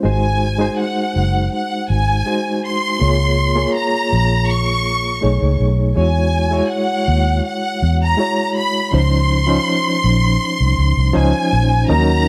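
A lush, expressive violin section carries the melody up front in this silky, cinematic fragment of 1970s-style soul, its bowed ensemble lines sung with vibrato over light reverb and small-room ambience. Beneath it, a barky, reedy electric piano with light overdrive and fast tremolo supplies chords moving from Ab7 toward Dbmaj9, while a dark, round, foam-muted electric bass sits prominently at the bottom. At 11.9 s a mellow French horn section slips in at the back with smooth, sustained chords.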